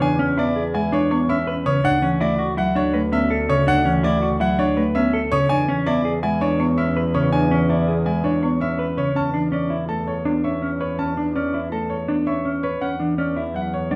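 Close, detailed microphones and light reverb frame this hypnotic, propulsive minimalist pattern piece in 5/4 at 164 BPM in E mixolydian: a brilliant grand piano with audible action noise carries the melody up front, a dark, compressed clean electric guitar plays arpeggios, a woody, dry folk marimba with medium mallets supplies accompaniment, and a distant, bowed double bass with vibrato holds the low line, with the harmony moving from E7 to E7sus4 as a new section begins at 9.2 seconds.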